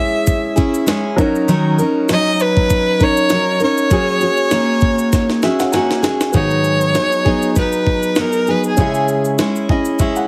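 A boxy, vibrato-rich bowed violin sings the melody up front over a full-bodied picked steel-string guitar and a soft, mellow felt-muted upright piano in the background, joined at 0.3 seconds by a gritty, pitched-up jungle sampler-style kit with a thumpy kick, high-tuned snare and shaker, with piano and drum fills arriving at 5.1 seconds, in this reflective, wistful acoustic pop fragment cut from a longer piece, set in light reverb with a heavily compressed, radio-like sound.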